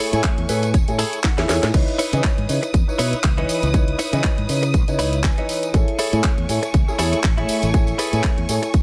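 Filtered disco house at 120 BPM in 4/4, with a light sixteenth-note swing and a sensual, nostalgic mood, heard as a short cut from a longer piece. A punchy, up-front electronic kick anchors the groove, joined by a house drum kit with a cracking snare, handclaps, hi-hat and crash, plus a saturated tambourine sitting in the background. The hats, cymbals, tambourine, bass, piano, guitar and violins all breathe with sidechain pumping. A fingered electric bass plays the low line, while a dark, boxy grand piano with long sustain and a phaser supplies accompaniment. A bright, twangy clean electric guitar recorded direct plays a riff with fills at 0.2 and 4.7 seconds, and a drum fill arrives at 1.2 seconds. A lush symphonic violin section holds sustained chords with vibrato over a progression moving from Amaj7 to C#m9 and back, all in a dry sound with little reverb.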